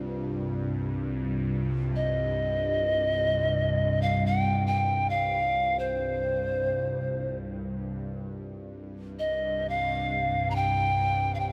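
Spacious and meditative, this free-time world meditation fragment in C minor pentatonic rests on a tense, string-like drone up front, its bright sawtooth edge, noise layer and long sustain coloured by a built-in reverb and phaser. A metallic bronze singing bowl, struck with a wooden striker, rings with slow beating in the background until 5.5 seconds. From 2.0 seconds an airy, up-front pan flute with a crisp chiff and vibrato carries the melody through a wet church reverb.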